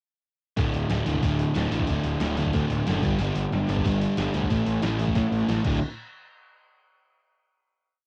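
Punk rock, rebellious and energetic, rushes through a brief, straight-feel burst in which two crunchy overdriven guitars, fuzz bass and drums all enter at 0.6 seconds. The guitars drive eighth-note power chords through D5, G5 and A5, one bright and up front, the other mellower and set back in the background, both carrying a cassette-tape coloring. The fuzz bass, played with a pick and run through overdrive, growls up front with driving eighth notes of its own. The trip hop sampler-style kit sounds compressed, pitched down and gritty, with a thumpy kick, a medium-tuned snare, hi-hat and crash playing a fast punk groove, and a drum fill at 5.2 seconds. After the verse ends, a final hit begins at 5.8 seconds, and the whole track keeps a dry, homemade cassette character.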